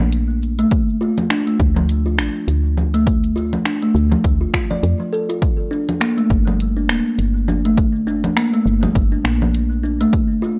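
A round, dark FM bass and an overdriven deep house kit of congas, finger snaps, hi-hat and shaker open this earthy, mystical organic downtempo passage in G minor at 102 BPM, with a swung sixteenth-note feel. At 0.6 seconds a thumb-plucked kalimba enters with short, boxy arpeggios through tape echo, joined by a punchy, overdriven electronic kick, all over a Dm chord arriving at 0.7 seconds that moves to Gmadd9 at 5.4 seconds. The gritty hardware sound stays dry, with only light reverb, and the bass, kick and kalimba sit up front.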